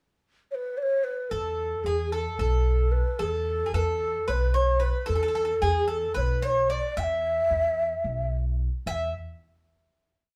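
A breathy, hollow ney opens the piece alone at 0.5 s with a pickup bar, playing a modal melody in E makam hicaz with ornaments, vibrato and a soft attack. At 1.3 s the Greek bouzouki and upright bass come in together. The bouzouki's bright, metallic double strings, some doubled at the octave, pick out the same line with ornaments of their own. The pizzicato bass sits up front beside the ney, its woody tone holding a simple root-and-fifth part. This stately, passionate Turkish makam piece moves at 223 eighth-note beats per minute in a straight 7/8, through one brief section to a final note ending around 10.4 s. The trio plays live in one room, with moderate studio reverb giving the sound a natural sense of space.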